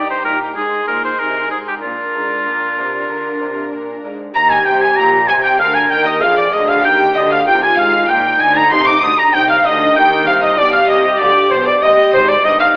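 A clear oboe sits up front with the melody in this lively, brilliant baroque-style concerto movement, its solo line carrying light vibrato and classical poise. In the background a bowed violin section traces the melody as well, while a second violin section plays a rich, focused second line with vibrato. A dark viola section with soft attack and expressive portamento fills in the accompaniment. It is joined by a delicate fingerpicked lute with gut double strings and a warm cello section holding the bass. At 4.4 seconds a smooth, even double bass section enters in the background, deepening the low end, and later the harmony turns toward C minor. The music, in straight 4/4 and cut from a longer piece, is heard with a moderate recital-hall reverb and a telephone-like sound.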